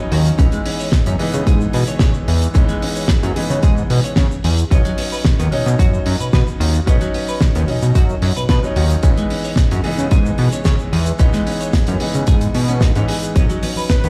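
A sensual, groovy nu-disco cut from a longer piece, moving between C#m9 and Badd9 chords over a straight 4/4 feel. A punchy, layered electronic kick sits up front beside a fat, detuned sawtooth bass with a filter pluck and sustained tone. A damped 70s kit adds a dry, fat snare with hi-hat and shaker. A brilliant concert grand piano carries the accompaniment with long sustain, sidechain pumping and delay, while a clean, twangy picked electric guitar plays a riff in the background through subtle chorus and delay. Very quiet congas and maracas slip in at 13.4 seconds, and a bold unison lead with vibrato and cassette-tape colour touches a single note at 13.9 seconds, all set in the echo of a bare stone room.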